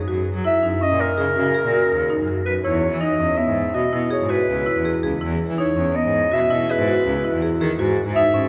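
A woody marimba playing arpeggios and a biting, bowed cello bass open this restless, urgent fragment of contemporary chamber music in 7/4 at 164 BPM, joined at 0.5 seconds by an up-front, jazz-style clarinet melody with soft-attack subtone and vibrato, all set in a church reverb.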